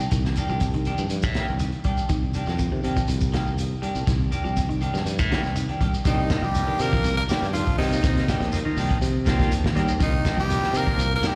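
A defiant, intense afrobeat groove in C minor at 122 BPM opens on a Cm9 with twangy, slightly broken-up guitar arpeggios, clean hollow-body guitar stabs, a bright, growly fingered bass, a grainy shekere and a crunchy, gritty breakbeat kit, before a raspy, edgy tenor saxophone takes the melody at 6.1 seconds over a buzzy combo organ, a very quiet brilliant trombone section and a distant plunger-muted trombone, all heard through a live venue's PA in a recital hall.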